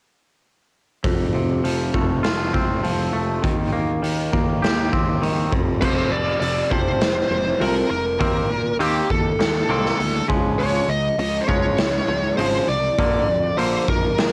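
A bright, overdriven lead guitar carries the melody from 5.8 s in this bittersweet, restless quiet-loud alternative rock excerpt at 100 BPM in F mixolydian, riding over clean, twangy electric guitar arpeggios, a round, fuzzy picked bass and a punchy, gritty garage drum kit with cassette-tape saturation and a pumping stone-room sound, captured as a home cassette recording with light reverb.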